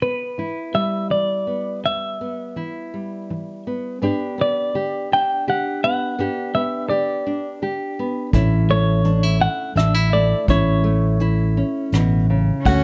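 A tender, hopeful acoustic folk-pop ballad in a gentle waltz-time lilt opens with a semi-hollow electric guitar carrying the melody in a clean, fingered, hollow-body voice, colored by harmonic tremolo and plate reverb. Beneath it, a nylon-string guitar fingerpicks a classical-style accompaniment with the warm sound of fresh strings, moving from Em/D to G. At 8.3 seconds, as the harmony shifts to A, a fretless electric bass enters, amped, punchy and up front, joined by a soft brush kit recorded naturally in a small room, with hi-hat, ride cymbal, rim click and a firm kick. In the final moments, from 12.6 seconds, a single bowed cello appears in the distance, expressive with vibrato and portamento. The whole piece is cut from a longer work and wrapped in light reverb and the worn, warbling character of old cassette tape, complete with drifting pitch.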